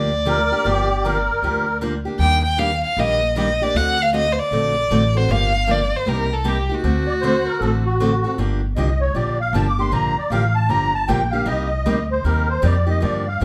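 A band playing live in one large studio with a moderate reverb carries this bittersweet, virtuosic cut of jazz manouche in G minor, swinging at 155 BPM through a Gm7, Ebmaj7, D7 and Cm7 progression. The bowed violin leads with expressive vibrato, soft attacks and portamento until 8.0 s, while a picked steel-string acoustic guitar with a touch of finger squeak comps alongside a growly, woody pizzicato upright bass. A reedy, shimmering musette accordion adds a brief second line near the start, returns at 7.1 s, and takes a dark, smooth solo from 8.4 s to the end of the excerpt.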